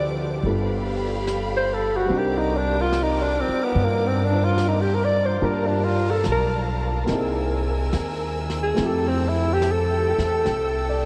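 A dreamy, reverb-soaked mix with vinyl crackle and lossy compression artefacts gives this short cut from a longer jazz ballad a hazy, intimate, smoky character. At 72 BPM in a swung 4/4, an up-front alto saxophone carries the solo melody with scooped notes and a vintage, jazz-style tone. A present baby grand piano with subtle chorus accompanies it, and a woody pizzicato upright bass on steel strings sits up front. A distant bowed string section holds sustained chords with vibrato, soft attacks and expressive portamento. Brushed snare and hi-hat enter at 0.4 s in the background, carrying a gritty 12-bit sampler texture. The harmony moves through G7, Cm9, Gm9 and C7alt before settling on Fmaj9 at 8.8 seconds.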